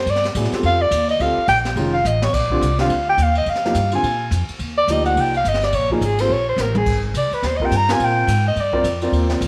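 Small-group swing jazz in Bb major at a brisk 212 BPM, this smoky, moody excerpt from a longer piece features a breathy, whispered soprano saxophone up front, soloing with vibrato and a soft attack over harmony that moves from Gm9 and F7alt to Bbmmaj7 and Abmaj7. A thumpy, gut-strung pizzicato upright bass and a woody, open upright piano support it, while a brushed kit with dark cymbals, a high-tuned snare and a boomy kick adds fills at 2.0 and 6.6 seconds. A moderate echo chamber reverb and small room ambience wrap the ensemble in a roomy space.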